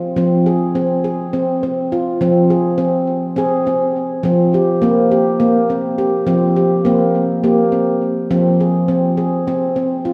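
A solo handpan carries this meditative world excerpt, its nitrided steel tones ringing out bright and airy from the front of the mix. Sharp finger strokes give each note a clear edge, while a delay on the instrument lets the tones trail behind one another. The music moves in a straight 7/8 that feels hypnotic, with the handpan staying between F3 and Ab4. The harmony rests on F minor, shifts to an Fsus24 color at 4.2 seconds, and returns to F minor at 8.3 seconds. A lush hall reverb soaks the whole sound in a dreamy haze, and this brief passage, cut from a longer piece, ends at 10.1 seconds.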